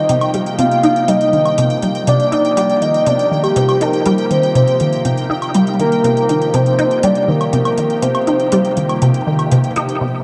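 A round, sub-octave-layered synth lead carries the melody with chorus, tremolo and delay over a squelchy, resonant blip-pluck riff colored by phaser, while an evolving, detuned wavetable pad holds a mellow Cmadd9, a bright pulsing gated texture shimmers on top, and a metallic electronic hi-hat and woodblock tick through delay, all in a hypnotic, mysterious 121 BPM C minor space-music excerpt with a filter sweep on the synth arpeggio, a dark production and a lush plate reverb.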